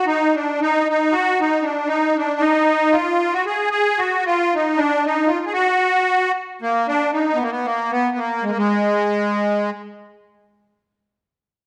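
A lopsided 7/8 metre with a straight feel drives this restless, virtuosic piece of Balkan folk, cut from a longer performance. A musette accordion carries the solo alone from the opening until 9.7 seconds, its reedy, shimmering musette tuning placed up front in the mix. Its line stays within a single octave, from Ab3 to Ab4, and a slapback echo colours its sound. The instrument sits in a moderate recital-hall reverb that lends the sound some air. The opening section gives way at 10.3 seconds to a brief new section that carries the piece to its close.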